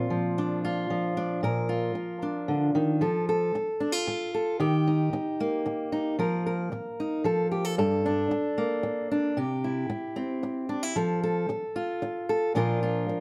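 Folk piece in a straight 3/4, hopeful and gentle, carried by a single fingerpicked steel-string acoustic guitar, up front and warm with audible finger squeak, set in moderate studio reverb as it moves from Bb through F, Eb and Gmadd9 before settling back on Bb around 12.5 seconds in this short cut from a longer piece.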